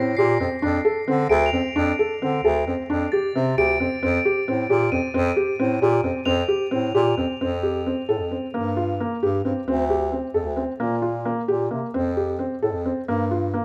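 A soft, mellow felt-muted upright piano plays intimate arpeggios up front over a clear, close-miked bass clarinet bass line in this hopeful, playful contemporary chamber piece in 5/8 at 265 BPM in eighths, while shimmering, bell-like crotales played with plastic mallets ring high above until 7.6 s, and the harmony settles into F major from 7.4 s under light reverb.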